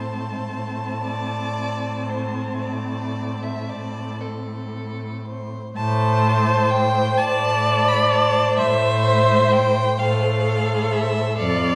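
Heard from further back in a wet recital hall with a 1.4-second reverb, this slow, melancholic and solemn romantic movement for string quartet, cut from a longer piece, sits in A minor in 12/8 at 36-44 BPM in dotted quarters, played with rubato over an A minor chord. Two rich, bowed violins carry an even, high melody and a focused second line beneath it, both smooth with vibrato, while the viola adds an expressive accompaniment with vibrato and portamento. The cello, warm and up front, anchors the bass with its own vibrato and portamento throughout the 11.8 seconds.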